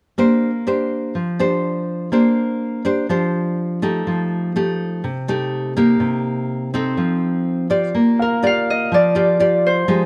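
Bossa nova with a breezy, sunny mood, this excerpt opens on an up-front, fingerpicked nylon-string guitar, woody and classical in tone with the character of old strings, carrying the chords under light reverb. At 8.2 seconds a ringing, fingerpicked Celtic harp takes the melody up front, while a natural-sounding grand piano sits in the background on F5. The production overall is dark and warm.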